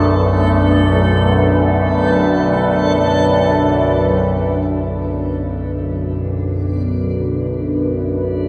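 Floating in free time, this brief, desolate dark ambient drone fragment rests on a single minor chord, with a resonant, overtone-sweeping low drone placed up front, colored by chorus and phaser. Above it, a deep, moody pad of detuned sawtooth and sine layers with a sub octave holds sustained chords through chorus and shimmer reverb, while a quieter reversed, granular texture adds dreamy swelling tones. A cavernous cathedral reverb surrounds all three parts, and the dark, warm production shifts into a new section at 4.7 seconds.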